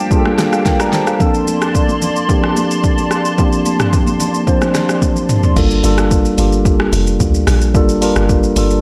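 Soulful and warm, this amapiano cut at 110 BPM rides a mellow tine electric piano over Gm9 and Bbmaj9 chords, while a hollow, flute-like pad holds sustained chords with ensemble chorus and sidechain pumping until 5.5 seconds. A punchy, tape-toned deep house kit with a fat snare sits up front, and very quiet, high-tuned congas ring beneath it until a drum fill leads into the drop at 5.6 seconds. There a deep, round log drum bass enters with a dark, percussive FM bite, the whole mix bathed in a digital ambience.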